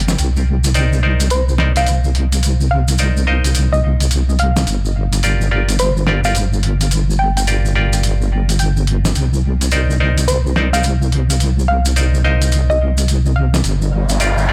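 An echo-heavy mix with light reverb carries this funky, swaggering glitch hop passage, swung on the sixteenths and cut from a longer piece. A heavy, saturated wobble bass sits up front beneath a compressed, pitched-down sampler-style kit of hi-hat and snare and distant, grainy maracas, while a woody, wave-folded pluck carries the melody through chorus and dub echo, and a twangy, nasal clav adds stabs from 0.8 s with vintage 12-bit sampler grit. The chords move between Cm9 and Gm7, and an electronic riser enters at 13.8 s.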